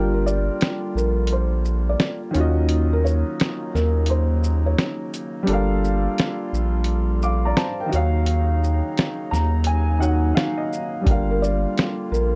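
Dark, warm production with light reverb frames this melancholic, nostalgic lo-fi hip hop clip, built on a swung 4/4 groove that drifts between Gm7 and Ebm7. A woody upright piano with a cassette-tape tint carries the accompaniment over a round, deep analog bass and a softly filtered woodwind section holding sustained chords with light vibrato. A felt-muted second piano, intimate and mellow with audible action noise, sings the melody until 5.4 s and returns at 11.3 s, while a compressed, muffled sampler-style kit of thumpy kick, snare, hi-hat and shaker sits up front, its kick dropping out from 8.3 s.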